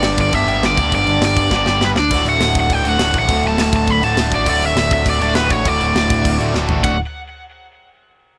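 A straight 4/4 punk rock beat from a tight, gritty metal drum kit with a rolled-off top, with fills at 1.5 and 6.5 seconds, drives this rebellious, energetic fragment as a bright, double-tracked distorted guitar riff and a dark, round, punchy overdriven picked bass move from G to D beneath an up-front crunchy overdriven lead melody trailed by tape echo, all set in a dry mix.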